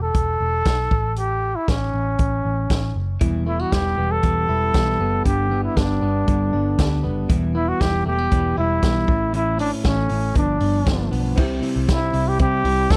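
A straight 4/4 groove from an up-front vintage drum kit with dark cymbals and a punchy kick, alongside a round, foam-muted picked electric bass, carries this wistful, restless jangly indie pop piece, where a breathy, whispered trumpet with vibrato sings the close-miked melody, a mellow fingered electric guitar and a bright, twangy direct-recorded guitar playing arpeggios enter in the background at 3.2 seconds, and a woody, slightly detuned upright piano slips in very quietly at 11.4 seconds, captured in a dry, close 1970s-style studio sound.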